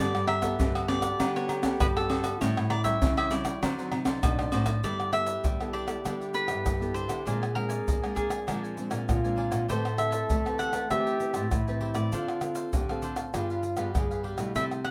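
Samba and choro at 99 BPM in a straight 4/4, this lively, festive excerpt opens in D major and shifts to G major at 4.8 s, where a second section begins with richer chords such as G69, Bb9 and Am9. A crisp, picked cavaquinho carries the melody while a mellow trombone, close-miked and played with vibrato in a jazz style, shapes a second line beneath it. Underneath, a second cavaquinho, also picked, sits in the background, and two fingerpicked nylon-string guitars fill out the harmony and the bass with a classical touch. The percussion, made up of caixa, tube shaker, pandeiro, tamborim, agogo bells and a deep surdo, sits up front and is played with soft hands. A moderate small-room reverb gives the ensemble an intimate, acoustic glow.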